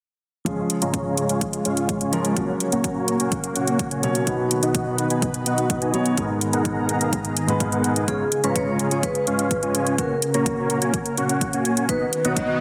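Triumphant and euphoric, this excerpt of festival progressive house in F# major moves at 126 BPM, with a punchy kick and metallic, up-front hi-hats driving under a huge, detuned supersaw riff that pumps with the sidechain, runs through a low-pass filter and trails dub echoes. A dark, mellow baby grand piano plays accompaniment with its own pumping and echo until 8.1 s, when a ringing vibraphone with medium hard mallets enters with the melody, while a bright, lush pad treated with chorus and phaser sustains chords in the background over a C#, F#, B and G#madd9 progression. A background riser enters at 12.1 s, and the whole mix sits in a lush hall reverb with a dense, heavily limited modern master.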